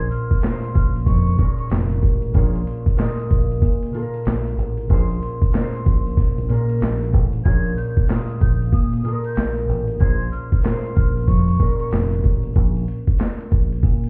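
This dark, moody cut from a longer boom-bap hip-hop piece sounds muffled, as if heard through a wall, with vinyl crackle and a touch of club reverb over an otherwise dry mix. At 94 BPM in 4/4 with a swung sixteenth feel in Bb minor, a sampler-style drum kit sits up front: compressed, pitched down and gritty, with a thumpy kick, a high-tuned snare, handclaps and hi-hat, re-recorded in a large room. A deep, round dub bass, fingered and played direct and amped, anchors the low end and also sits up front in the mix. A fingerpicked concert harp rings through the whole stretch with a cassette-tape tint, outlining a slow alternation between Bbm9 and Eb7sus4/Bb before the harmony drops away at 12.6 s. A breathy jazz flute adds a high melody with vibrato, a soft attack and lifted highs, heard briefly at the opening and again from 7.4 to 11.9 s, its slightly unsteady tone adding a human waver to the moody groove.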